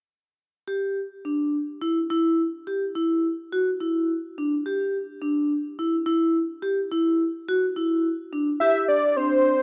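A dry, close 1970s-style studio sound with light reverb and small room ambience frames this brief, brooding progressive instrumental excerpt, moving in 7/8 at 212 BPM counted in eighths with a straight feel. A metallic, ringing vibraphone played with medium hard mallets, motor off, sits up front spinning intricate arpeggios over Dsus2 from 0.7 seconds. At 8.6 seconds a thick, bold unison lead of detuned sawtooth and triangle with a sub octave takes the melody over a rootless Am7, fast in attack yet sustained and mellow, as the vibraphone continues until 9.5 seconds.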